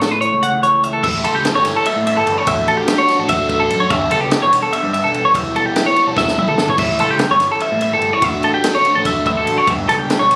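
A straight 7/8 pulse at 292 BPM in eighths drives this wistful, bright cut from a longer math rock and midwest emo piece: a clean, compressed twelve-string electric guitar plays up-front arpeggios over A7, Dmaj9/A, G69 and Emadd11 chords, a slightly broken-up electric guitar through a small old amp with subtle chorus opens the piece before an overdriven, double-tracked guitar riff with phaser enters at 1.0 s, a growling overdriven picked bass holds the low end, and a dry compact cocktail drum kit with dark cymbals, a high-tuned snare and a punchy kick plays a fill at 6.2 s, all heard in light club reverb as if captured on a phone in the room.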